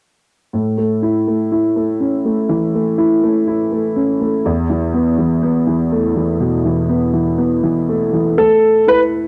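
Hopeful and heartfelt, this short pop excerpt moves at an unhurried pace, opening on an upright piano with a woody, boxy tone and long sustain that carries the accompaniment through A and Esus4 from 0.5 seconds. Near the end, at 8.4 seconds, a concert grand piano steps up front with a brief, polished melody, intimate and present with audible action noise and a touch of plate reverb. Both pianos have the soft grain of cassette tape, heard in a moderate studio ambience that suits the home recording.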